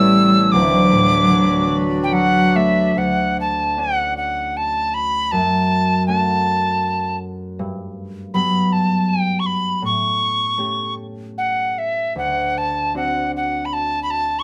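A bright wooden whistle leads this nostalgic, wistful Celtic slow air, its airy, tongued line carrying the melody up front with an audible chiff and expressive vibrato. The piece moves in a rubato 3/4 around 78 BPM in D major, and this is a short section lifted from a longer performance. A concert harp, fingerpicked and ringing, supports the whistle throughout, spanning from deep bass notes to the middle register. In the opening seconds a single bowed cello adds a rich, focused second line with its own vibrato, stopping at 2.5 seconds, while a pedal harmonium lays down reedy, breathing sustained chords until 2.9 seconds. From 3.0 seconds the whistle and harp continue as a duo through a gentle progression of chords such as Dmaj7, F#m and Gmaj7, closing on D7. The sound is of a small band playing live together in one studio room, with moderate reverb giving the instruments a natural, intimate space.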